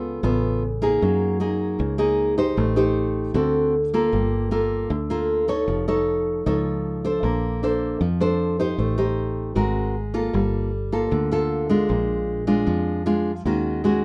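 A straight 4/4 bossa nova pulse at 154 BPM carries this sunny, sophisticated passage in Bb major, cut from a longer piece, where an up-front, full-bodied nylon-string guitar fingerpicks classical-style accompaniment with audible finger squeak through rich chords such as Gm9, Bbmaj9 and Ebm11, while a punchy, foam-muted fingered electric bass with a warm, direct tone holds down the low end, both playing for the full 14 seconds in a moderate studio ambience.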